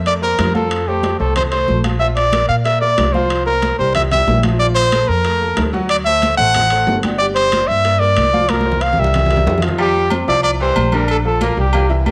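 A woody pizzicato upright bass opens this festive, danceable salsa excerpt at 185 BPM. A warm, lightly vibrato solo trumpet soon leads up front over a bright, brilliant upright piano, while high-tuned congas played with hard hands and ringing metal-shell timbales with agogo bells sit in the background. After a drum fill from 8.5 seconds, an edgy, vintage-toned saxophone section enters at 9.8 seconds as a second line, all set in a moderate echo-chamber reverb with small-room ambience.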